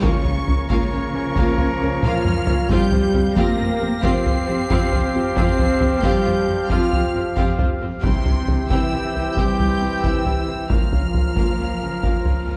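A saturated, compressed taiko played with hard sticks drives this dramatic, heroic orchestral film cue in a straight 12/8, with a drum fill at 2.0 seconds, while close, warm cellos and lush double basses anchor the low end, smooth violas and focused second violins fill the background, distant high violins carry an intense vibrato melody, a roomy French horn section, punchy woodwinds and very quiet trombones sustain chords beneath a lone trumpet's stabs, and a huge, bright reverse cymbal rises at 12.3 seconds at the end of this dark excerpt on a moderate scoring-stage reverb.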